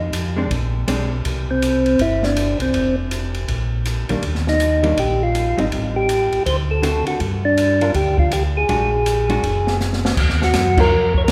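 Soul jazz organ trio in a bluesy, soulful swing at 161 BPM, with a mellow tonewheel organ carrying the bass line through a slow rotary speaker, an open jazz drum kit of dark cymbals and boomy kick, a clean, compressed hollow-body guitar comping briefly from 0.4 seconds and again from 4.1 seconds, and an up-front percussive tonewheel organ taking the melody from 1.5 seconds with its third harmonic percussion, all set in a moderate church reverb, with a drum fill at 9.8 seconds leading into a new section and a band accent near the close of this cut from a longer piece.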